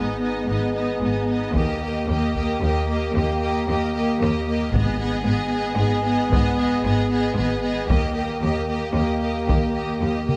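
This heroic, epic orchestral film-score passage in 3/4 at 113 BPM opens on a G# minor chord with the full string body and a clear, distant French horn section holding sustained chords, as a lush, softly attacked violin section carries the melody over a second violin line, an intense viola accompaniment and bowed cello and double bass sections anchoring the bass. Close, dry taiko drums struck with hard sticks enter at 1.6 s to drive the build-up, while very quiet, articulate timpani sound G# between 4.7 and 5.5 s. The harmony moves between G#m and D#, and the whole passage sits in a moderate scoring-stage reverb, cut from a longer piece.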